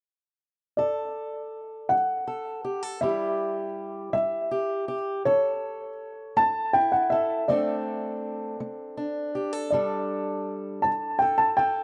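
Folk music in 6/8 with a straight feel, this short excerpt from a longer piece carries an anthemic, uplifting mood despite its unhurried pace. A dark upright piano carries the melody in its upper-middle register, its mellow, woody tone marked by short sustain and colored by tape echo. Beneath it, a fingerpicked acoustic archtop guitar supplies accompaniment, its tone warm, with audible finger squeak, sitting lower in the mix than the piano while both remain up front. The harmony moves from Gsus2 through Em, A/E and D7/F# before returning to Gsus2 at 9.7 seconds. The sound is dry, with little reverb, and has the rough, dulled top end of a home demo.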